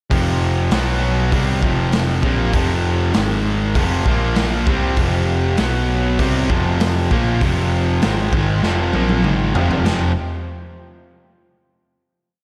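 A big arena sound with a lush hall reverb frames this short, complete hard rock piece, heavy and aggressive at 98 BPM in a straight 4/4. Two overdriven electric guitars play a picked power-chord riff from the start, one bright and up front, the other sludgy and warm, moving through F5, B5, Ab5 and Bb5 before a turn to F minor. An overdriven picked bass, round and punchy, doubles the guitar riff with a driving eighth-note line. A raw garage drum kit supplies a big rock groove with kick, snare, hi-hat, toms and splash cymbal, its sound saturated and gritty with dark cymbals and a rolled-off top, and it plays a fill from 8.6 to 9.9 seconds. Underneath, a very quiet chorused pulse-width pad, shimmering and retro with a slow attack, holds sustained chords from 0.4 seconds, carrying into the closing F5 chord that rings out at 9.9 seconds.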